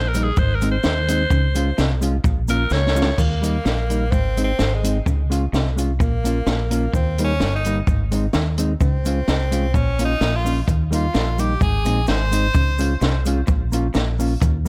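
Ska with a joyful, bouncy swing, this excerpt opens on a raspy, forceful alto saxophone solo that gives way at 3.2 seconds, after a short fill from the compact cocktail drum kit with its high-tuned snare and punchy kick, to an edgy tenor saxophone solo with light vibrato and tape echo. Underneath, a deep, round fingered electric bass sits up front, a dark, clean hollow-body jazz guitar adds accompaniment through tape echo, and a very quiet, twangy electric guitar on the edge of break-up picks out a low riff. A grainy cabasa, also echoed, stays in the background, and the whole band sits in a light small-room ambience.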